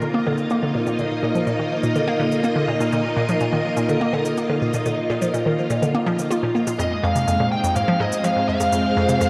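Hypnotic and expansive, this short cut of sequencer-driven ambient space music moves at 124 BPM in a straight 4/4, with a lush, sawtooth string machine holding sustained chords from Bbsus4 to Fm, a hollow, nasal square-wave pluck bouncing through a riff with chorus and tape echo, electronic shaker and percussion blips sitting low in the mix, and a distorted, bluesy lead guitar arriving at 6.8 seconds, all bathed in a wet spring reverb and heavy echo.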